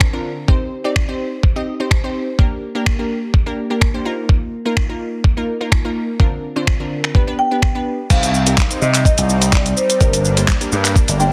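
Dense and heavily limited with a digital ambience, this bittersweet yet confident dance-pop excerpt in C minor moves at 126 BPM in a straight 4/4, opening on a crystalline, chorused wavetable pluck that pumps against a compressed, sampler-style soul kit with a thumpy kick, clipped snare, snaps, claps, shaker, hi-hat and crash sitting up front. A mellow, woody marimba melody with dub echo arrives at 7.4 seconds over a progression running from Cm through Gm, Ebsus2 and Bbadd9/D to G. At 8.1 seconds the next section begins as a punchy, overdriven slap bass and a lush, detuned supersaw pad in the background join the pumping groove.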